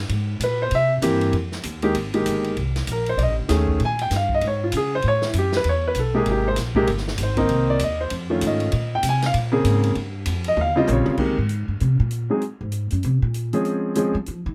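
Dry and close, with little reverb, this sophisticated swing-feel jazz piano trio, cut from a longer piece, opens with a clear, intimate baby grand piano solo whose action noise is audible, over a woody, up-front pizzicato upright bass and a natural studio-room drum kit with a punchy kick and medium-tuned snare, until a drum fill at 10.6 seconds precedes an upright bass solo from 11.2 seconds.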